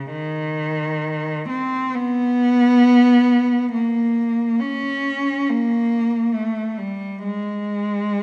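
Moving in free time, this mournful, lonely classical fragment, cut from a longer piece, features a single bowed cello, rich and focused with vibrato, playing up front between C#3 and C#4 for its 8.2 seconds within a moderate scoring-stage reverb.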